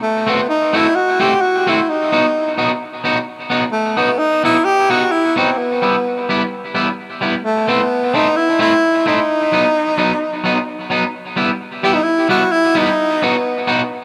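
A lightly swung 4/4 pulse at 130 BPM drives this energetic ska fragment in E harmonic minor, cut from a longer piece. A breathy tenor saxophone carries the melody up front from the first moment, its soft attack, whispered tone and gentle vibrato giving the solo an intimate, pop-style character against the push of the groove. Beside it, an electric guitar plays the accompaniment, bright and twangy with a picked edge, just starting to break up, and also placed close in the mix. Both parts carry a tape echo, and a wet club reverb surrounds the sound. The harmony moves from F#dim through B, Em and Am before returning to B, then shifts into a new passage at 11.1 s that lands on Em and B, with the saxophone stopping at 13.7 s and the guitar at 13.8 s.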